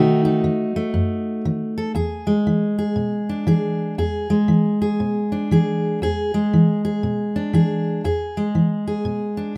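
Set in a moderate studio reverb, this laid-back, swaggering swung blues fragment features a lone fingerpicked steel-string jumbo acoustic guitar, bright, full-bodied and up front, moving from B7 to E7 at 2.0 seconds.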